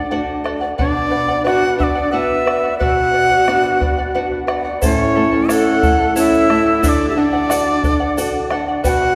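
Earthy and festive, this short Andean folk passage from a longer piece moves in a lilting triple metre with a straight feel, cycling through D, B minor and A. A reedy cane quena carries the melody up front, its tongued notes airy with gentle vibrato and lifted highs. Beneath it a close-miked bamboo pan flute plays a breathy second line, with audible chiff and its own touch of vibrato. The charango adds a shimmering, fingerpicked bed of doubled strings, some octave-doubled, while a small, bright nylon-string guitar fingerpicks the lower harmony. A round, close bombo enters at 0.5 seconds, and a grainy, distant egg shaker joins at 4.8 seconds as the passage repeats. The ensemble sits in the lush, lingering reverb of a church or concert hall.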